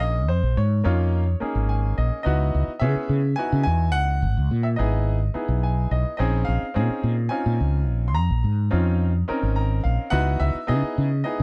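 A fretless electric bass and a concert grand piano start together in this slick, intense electric jazz fusion excerpt, set in Bb minor and a straight 7/8 at 213 BPM counted in eighths. The fretless bass sits up front and louder in the mix, its dark, round, amped tone thickened by a lush chorus as it carries the low end from Ab1 to Db3. The piano, brilliant yet natural with deep bass and a short sustain, supplies accompaniment between Bb3 and C6. It breaks into brief fills, the first at 1.4 seconds, with others recurring through the passage. The harmony moves between Bbm11 and Dbm11, shifting at 2.2, 6.2 and 10.1 seconds. The sound is dry and close, like a 1970s studio session with little reverb.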